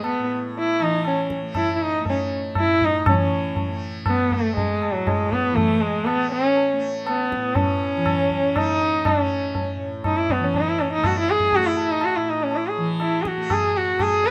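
A single bowed sarangi, warm and gliding with vibrato and soft attacks, carries the melody up front from the first moment, joined at once by a bright, buzzing tanpura drone and close, dry, high-tuned tabla in a meditative, radiant Hindustani piece in raga yaman on A. Set in 3/4 at 120 BPM with a straight feel and tuned to A4 = 445 Hz, the sarangi's expressive portamento rings against its sympathetic strings while the softly plucked tanpura shimmers beneath at a lower level. A moderate small room reverb lends gentle space, and this passage, cut from a longer piece, moves into a new section at 3.1 seconds that runs to 14.3 seconds.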